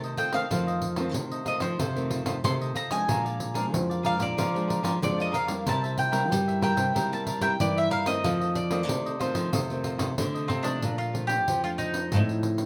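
Lively and sunny, this short cut from a longer samba and choro piece moves at a straight 93 BPM in Bb major, with a woody, double-stringed mandolin carrying the picked melody up front from 0.2 seconds over a crisp, bright cavaquinho, a fingerpicked classical nylon-string guitar with audible finger squeak, and a dark, full-bodied nylon-string guitar holding down the bass. A jingly pandeiro played with soft hands adds a small-room texture, and the cavaquinho drops out at 10.8 seconds as the harmony moves from dominant sevenths to a Bbmaj7, all within a moderate studio reverb.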